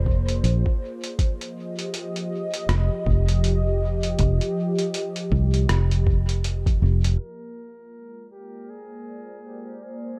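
Muffled by a low-pass filter and set in a light reverb, this short passage cut from a longer ambient dub piece feels spacious and deep at 80 BPM in 4/4, with a swung sixteenth-note feel. A detuned sawtooth analog pad with chorus holds soft-attack chords under everything from the opening, moving from Bb9 to Fm9 at 1.2 seconds and back to Bb9 later. Up front, a round, punchy fingered electric bass with a dark, foam-muted tone sits low beneath a thumpy, overdriven electronic kick. Quieter, a compressed, pitched-down lo-fi sampler-style kit adds hi-hat and rim click, its overdrive trailing into dub echo. The kick drops out at 6.8 seconds, and at 7.2 seconds the bass and the kit fall away and a filter sweep begins, as a close-miked trumpet with metal mute plays a brief, buzzy classical-style solo line, thin and brilliant, coloured by 12-bit sampler grit and dub echo, while the mellow pad carries on to the end at 10.2 seconds.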